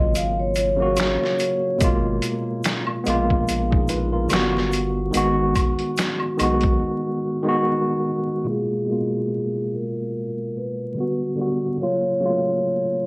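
Melancholic and reflective, this lo-fi hip hop excerpt from a longer piece moves with a gently swung, unhurried sway under a soft bed of vinyl crackle and a short studio reverb. A worn, bright tine electric piano sits up front throughout, slightly out of tune and lightly overdriven as if heard through built-in speakers, drifting across jazz chords such as F#maj7, G#m69 and Gmaj7. A vibraphone played with soft mallets, motor off, adds a metallic, ringing melody with delay and plate reverb, appearing briefly at the opening and returning at 8.5 seconds. Beneath, a deep, thick saturated sub bass and a gritty, pitched-down sampler-style drum kit with a thumpy kick, medium-tuned snare, hi-hat and finger snaps carry the groove, joined in the background by a small-room egg shaker, woodblock and group handclap. The bass and drums drop out at 6.8 seconds, leaving the electric piano to carry a brief break before the closing section.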